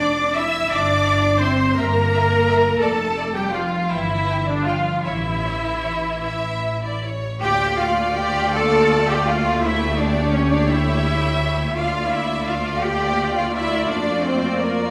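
Heard through the wet reverb of a recital hall, this elegiac, solemn passage cut from a longer slow romantic movement for string orchestra moves in a rubato 6/8 at 50-58 BPM in dotted quarters, in D minor. Two distant, intense violin sections carry the melody and a higher second line, while an up-front, focused viola section supplies the accompaniment. A lush cello section and a smooth-topped double bass section anchor the bass, with a second section beginning at 7.4 seconds where the harmony settles between D minor and A7 over D.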